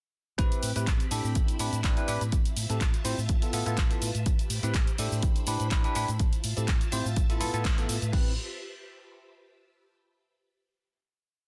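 A dense, heavily limited modern master in digital ambience frames this short, funky and nostalgic filtered disco house piece in A minor at 124 BPM, with a light 16th-note swing and a punchy, up-front four-on-the-floor electronic kick re-recorded in a small room. From 0.4 s a round, amped fingered electric bass jumps octaves beneath a bell-like tine electric piano playing a rootless rhythmic chord riff through phaser, while a swirling, warbling string machine holds sawtooth chords with ensemble chorus and phaser, and an analog drum machine adds hi-hat, handclaps, cabasa and crash. Bass, keys, strings and the drum machine's hats, percussion and cymbals all pump against the kick through Am9 to Fmaj7#11/A changes, with a band accent at 7.6 s before an Am9 chord at 8.1 s closes the piece.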